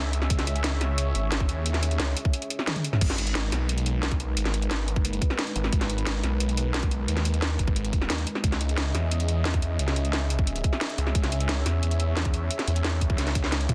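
Driving straight 4/4 at 177 BPM, this dark, mechanical technical drum and bass excerpt in G# minor pairs a tight, up-front electronic kick and a layered kit with a cracking snare, metallic hats, crash and toms against a snarling, growling distorted saw bass with tube saturation and sidechain pumping, while a deep, moody analog pad with chorus sustains dark chords beneath, all in a dry, dense, heavily limited mix with drum fills at 2.7 and 13.2 seconds.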